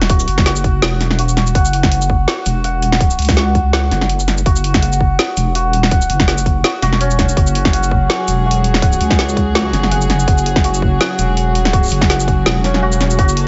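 Dark and heavy, this half-time drum and bass fragment moves with a lightly swung sixteenth-note feel. A bright, shimmering santur plays arpeggios throughout, its hammered tone roughened by vintage 12-bit sampler grit and trailed by a digital delay. Beneath it, a deep, soft wobble bass sits up front, its triangle-and-sine tone compressed and thickened with chorus and tube saturation. The drum kit is also up front, with a woody snare, metallic hi-hats and shaker, joined by a tight, layered electronic kick, all re-recorded in a small room. At 7.4 seconds a rich studio string section enters with floating, bowed sustained chords that breathe with sidechain pumping. The mix carries light reverb and a dulled top end, giving the whole a shadowy, enclosed character.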